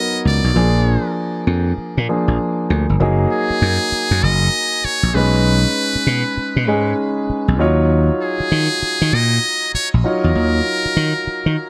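A dry, close, up-front mix frames this confident, slick new jack swing cut with a swung sixteenth-note feel, taken from a longer piece. A muted trumpet carries the melody in a buzzy, thin, pop-style solo with light vibrato and scooped notes, while a grand piano with audible action noise and long sustain supplies polished accompaniment over chords moving from Bmaj7 to Ebm9. From 0.3 seconds a growly, punchy slap bass anchors the low end, its amped electric tone the loudest part.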